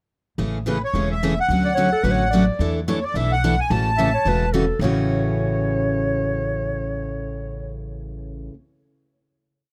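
A brisk four-to-the-bar swing at 217 BPM drives this short, lively piece of acoustic string swing in A major. The picked steel-string acoustic guitar sits up front with a bright, full-bodied dreadnought tone and fresh strings, its rhythm chords short and accented on two and four. The upright bass plays a thumpy, woody two-beat root-and-fifth line, and both start at 0.4 seconds. The reedy, sweet accordion, with light tremolo tuning, carries a motif-based melody of song-like phrases over Amaj7, Dmaj7, E7sus4 and A6. A breathy clarinet, present and up front with jazz vibrato, enters at 1.6 seconds and slips answering phrases into the melody's rests, carrying on as the piece settles on a final chord. The sound is that of a rough home demo in a small room, giving the swinging performance an intimate, casual feel.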